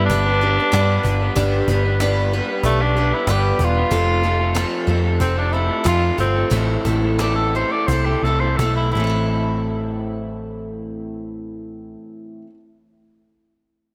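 Reflective and dusty, this folk rock and heartland rock excerpt moves in a straight 4/4 at 80-95 BPM in A minor, with a raspy, gritty tenor saxophone solo carrying the melody up front through delay until 9.3 s, slowing from 3.9 s as the chords pass from G to F to Am. Beneath it, a brilliant, boxy parlour acoustic guitar picks the accompaniment and a dark, slightly broken-up electric guitar through a small old amp plays a lo-fi riff, both with subtle chorus, while a round hollow-body short-scale bass sits up front and a snappy, dry cajon keeps time in the background until 9.1 s. A lush hall reverb and brilliant 1980s-style digital production frame the sound, and the guitars and bass carry on briefly after the saxophone stops.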